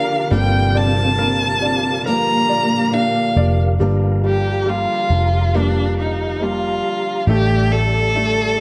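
An expressive solo violin carries the melody up front with vibrato and portamento in this heartbroken, longing pop ballad excerpt in G minor at 69 BPM, joined at first by a lush bowed cello section that drops away at 3.8 s. A punchy, foam-muted electric bass enters at 0.3 s beneath a brilliant concert grand piano, while a boxy, thumb-plucked flamenco guitar arpeggiates in the background and a flute-like tonewheel organ holds soft chords through chorus vibrato and a fast rotary speaker. The harmony sits on Gm7 before moving to Dsus4/A at 7.3 s, all in a small room with light reverb.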